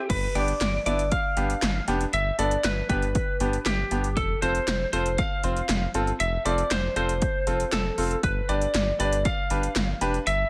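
A straight 4/4 pulse at 118 BPM comes from overdriven 80s electronic pad drums, with a punchy kick, gated snare, metallic hats, handclaps and crash cymbal, set up front beside a round, deep analog bass that holds low F and G. Over this wistful, nostalgic synth-pop passage in G mixolydian, a dark, slightly broken-up electric lead guitar carries the picked, compressed melody, while a bright grand piano with short sustain adds brilliant accompaniment. The harmony moves from G to F at 4.2 seconds and back to G at 8.2 seconds, all within light reverb, in this brief cut from a longer piece.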